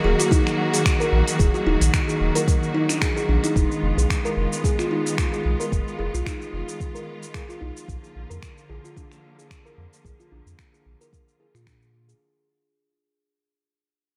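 A lightly swung 111 BPM groove in 4/4 anchors this meditative organic downtempo passage, with a deep electronic kick entering at 0.3 seconds beside a produced kit of finger snaps, crisp hi-hat and shaker, both re-recorded in a large room. Underneath, a round, sine-like sub bass with a fast attack and mellow sustain sits up front and pumps against the sidechain. A woody, hollow-toned kalimba plays short thumb-plucked arpeggios through a low-pass filter and tape echo, carrying a boxy small-room character. Alongside them, a bright, lush studio string section holds bowed, vibrato-rich chords that also pump with the sidechain, moving from Ebm to Fm7b5 and then to Bb. Moderate echo-chamber reverb and digital ambience surround the mix, and the whole 12.2-second excerpt, cut from a longer piece, is a fade-out with a warm overall feel.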